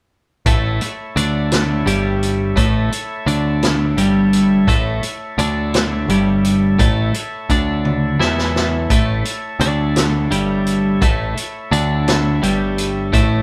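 From 0.5 s the band enters together in a trippy, kaleidoscopic psychedelic rock excerpt at 57 BPM in 6/8 and A mixolydian, led by a bright, twangy twelve-string electric guitar riff up front, with a round picked bass, a vintage drum kit with a punchy kick and rolled-off top that plays a fill from 7.8 to 8.9 s, and a gritty overdriven tonewheel organ holding thick sustained chords through a slow rotary speaker further back, the band captured live in one room with moderate studio ambience.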